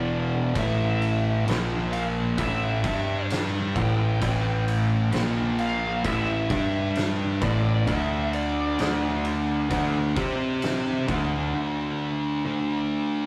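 Stoner and doom metal at a hypnotic, heavy crawl, this short excerpt sets a dark, wah-filtered fuzz lead melody over two thick fuzz rhythm guitars, one up front and one very quiet, a growly, round overdriven bass, and an oversized low-tuned kit with a fat snare, punchy kick and dark ride cymbal that enters at 0.6 seconds, all captured as a rough rehearsal-room recording with tube saturation and a small, wet room reverb.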